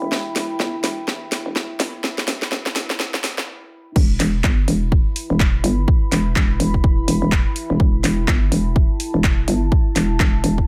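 Swung sixteenths drive this swaggering, aggressive bass house excerpt in four, where a garage drum kit of cracking snare, hi-hat, handclaps and crash cymbal plays a drum fill through a filter-swept build-up before a brief stop at 3.5 seconds. At 4.0 seconds the drop lands with a punchy, tape-warm electronic kick up front. Throughout, a hollow, knocking FM bass with overdrive pumps against the sidechain beneath a deep, dark, detuned ambient pad of sustained chords carrying chorus and its own reverb, all in a dry, up-front mix.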